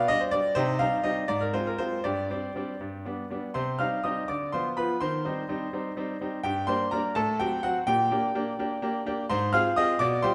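Bathed in a wet recital-hall reverb, this elegant, dramatic fragment of a classical-period piano sonatina in C minor unfolds in a rubato 6/8 at about 84 BPM, its solo baby grand, tuned to A4 = 435 Hz, sounding brilliant, intimate and up front, with its action noise audible as it moves from G/B through Cm and Gsus4 before turning toward Gm and closing on Fm/Ab at 9.3 seconds.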